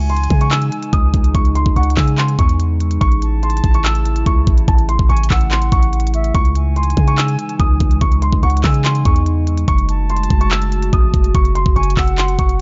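A deep, boomy 808-style bass sits up front in this brooding trap excerpt, its sine tone hitting with a fast attack and decaying between notes. It shares the spotlight with an electronic drum kit that enters at 0.1 seconds, pairing a knocking kick with crisp hi-hats and handclaps at 144 BPM in a half-time feel. Above them, a dark concert grand piano carries the melody high in its register, its notes trailed by delay. A distant, airy jazz flute with vibrato and tongued notes plays a second line just beneath it, also echoed by delay. A warbling, nostalgic pad in lo-fi detuned square and triangle tones swells in slowly through chorus, phaser and its own reverb to hold sustained chords moving from C#madd9 to A, back to C#madd9 and on to F#madd9 in C# harmonic minor. The mix is dry overall and its top end is dulled, keeping the 12.6-second passage dark and heavy.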